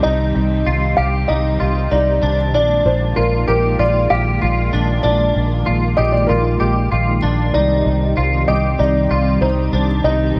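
This hazy, haunting dream pop excerpt in C minor opens with every part at once at 96 BPM in a straight 4/4: a mellow, felt-muted upright piano carries the melody with dub echo and audible action noise, over sawtooth string-machine violas holding soft-attack chords through phaser and ensemble chorus. A twangy, compressed clean electric guitar picks arpeggios through analog chorus and dub echo, while a round, foam-muted fingered electric bass sits up front. The harmony moves from Cmadd9 to Bb7 at 2.5 seconds and back to Cmadd9 at 7.5 seconds, all inside a moderate echo-chamber reverb and an echo-heavy mix.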